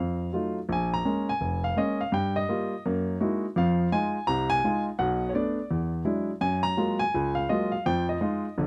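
Solo jazz at a swinging 168 BPM, this smoky snippet from a longer piece features a warm, natural-toned baby grand piano with short sustain, placed up front across a span from F1 to Bb5, moving from an opening F7b9 through chords such as Gb13, E9 and Gbmaj9 before settling on Fm9, all captured in a dry, close 1970s-style studio sound with small-room ambience.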